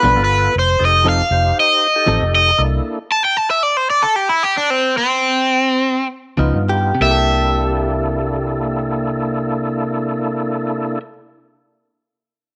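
Soulful and swaggering, this straight 4/4 blues, cut from a longer piece, is led by a bright, overdriven semi-hollow guitar with phaser carrying the melody up front. A gritty tonewheel organ through a slow rotary speaker, a round, foam-muted bass and clean, compressed direct-recorded guitar stabs drop out within the first 3 seconds, leaving the lead guitar alone as the pulse slows, then return at 6.4 seconds. A second clean direct-recorded guitar with spring reverb adds a line from 6.7 seconds, and the room carries a light reverb.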